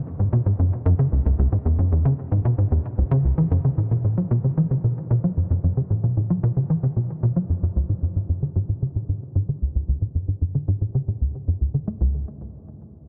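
Expansive and mysterious, this ambient piece moves at 113 BPM in a straight 4/4, tuned to A4 = 441 Hz and cut from a longer work. A tight sequencer bass plays a driving riff from 0.2 s to 12.3 s, spanning C#2 to A3. Its punchy, sawtooth-edged and ring-modulated tone has a plucked, decaying filter and a filter sweep, and it sits up front with analog chorus and delay in a huge ambient reverb.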